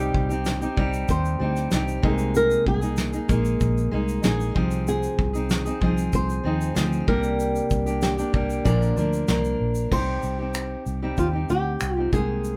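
Tender and reflective, this acoustic pop piece has a flamenco guitar with fresh strings carrying the melody over a full-bodied, up-front jumbo steel-string guitar, fingerpicked with audible finger squeak. A dark, foam-muted vintage electric bass adds a round, amped low end, while a soft brush kit sits up front with dark cymbals, a fat snare, a tight kick, shaker, finger snaps and crash. Recorded as a band playing live in one room with moderate studio ambience, the harmony moves from Cm through chords held over a C bass to Bb, returning to Cm at 9.9 seconds.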